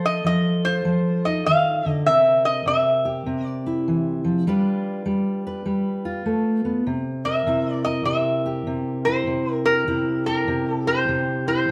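A metallic, nasal resonator slide guitar played with fingerpicks carries the melody up front in this swaggering, rollicking snippet of swung acoustic country blues, while a full-bodied jumbo steel-string acoustic guitar fingerpicks the accompaniment through F7, C7 and G7 chords, the duo heard playing live in one room with a wet studio reverb.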